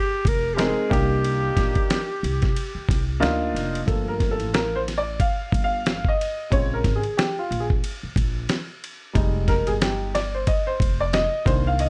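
A clear, slightly detuned upright piano comes to the fore in this mellow, smoky jazz-hop excerpt at 91 BPM in G phrygian, taking a solo from 3.9 seconds over minor ninth chords. Before that, a forceful alto saxophone with vibrato and a smooth top states a brief melody through plate reverb and analog delay, ending at 3.2 seconds. Underneath, a gritty, compressed sampler-style drum kit with a thumpy kick and swung sixteenths sits up front, joined by a woody pizzicato upright bass, all framed by a dark production with light reverb.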